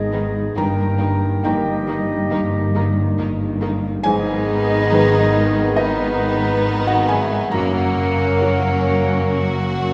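A distant, roomy solo clarinet and a pure, straight-toned concert flute trace second lines in this longing, bittersweet orchestral film score in a rubato feel, set over a soft, felt-muted upright piano, very quiet mellow French horn chords, lush bowed double basses and cellos, a smooth violin melody and second violin line with light vibrato, and a rich viola section, all heard from further back in a reverberant concert hall.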